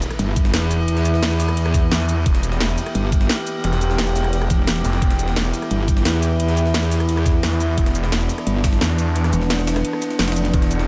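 A sub drop impact opens this tense, futuristic snippet of dark technical drum and bass at 174 BPM in E minor, where an eerie, warbling metallic drone holds sustained chords over a cracking drum and bass kit with metallic hats, a very quiet, gritty jungle sampler-style kit with a high-tuned snare, and a metallic wobble bass and knocking overdriven kick that arrive almost at once; at 1.9 seconds a snarling, detuned saw bass joins up front, the kick drops out at 9.8 seconds, and a soft, round pluck surfaces at 10.5 seconds, all within a light digital ambience.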